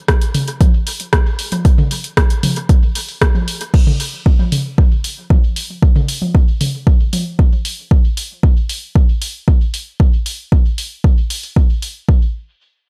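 An overdriven electronic kick drum leads this techno excerpt, deep and layered, sitting up front from 0.1 to 12.2 seconds at 115 BPM in a straight 4/4. Alongside it, a punchy analog drum machine supplies crash cymbal, hi-hat and rim click with a tape-warm character, its parts trailing off in dub echo and closing at 11.9 seconds. Electronic toms arrive at 0.3 seconds, sounding as if re-recorded in a large room, their sidechain pumping and dub echo giving them a roomy, swaying presence until they stop at 7.2 seconds. The mix leans heavily on echo while keeping reverb minimal, so the kick and drum machine feel close and tight against the more distant toms. The mood is hypnotic and meditative, a short stretch cut from a longer piece that moves from one section into a second at 3.7 seconds.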